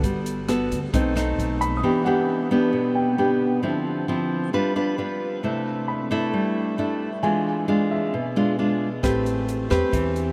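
Soaked in a huge, dreamy ambient reverb, this sunny, sophisticated bossa nova excerpt at 133 BPM in E minor rests on an up-front, fingerpicked classical nylon-string guitar, joined by woody pizzicato upright bass and a dry cocktail drum kit with a punchy kick, hi-hat and rim click that drop away near 1.8 seconds and return at 9.0 seconds, while a warm, natural baby grand piano with short sustain sits in the background from 1.6 seconds.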